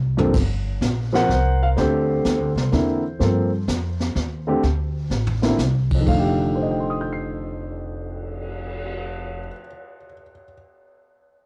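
An intimate, up-front grand piano carries the melody in this sophisticated, warm jazz piano trio excerpt, its action noise audible through plate reverb and cassette tape coloring over a swung three-beat feel. A woody, thumpy pizzicato upright bass anchors the low end until 9.5 seconds, while a distant, roomy brush kit with dark cymbals, a high-tuned snare and a tight kick adds a fill at the outset and another at 5.1 seconds before dropping out at 8.8 seconds. Light reverb and the character of a home cassette recording frame the trio as it moves through rich, extended harmony.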